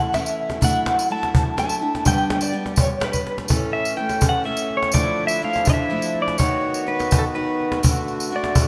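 Gentle and pastoral, this folk excerpt in 3/4 at 125 BPM in A mixolydian opens with a slightly broken-up, lo-fi electric guitar melody through a small old amp with tremolo, over picked steel-string acoustic guitar with audible finger squeak, an up-front snappy cajon and a jingly, bright tambourine; after a drum fill, the accordion's reedy, slowly beating chords arrive at 3.5 seconds and a clean, fingerpicked pedal steel guitar takes a solo with volume swells and slide from 3.7 seconds, the rough home-demo mix bathed in lush hall reverb.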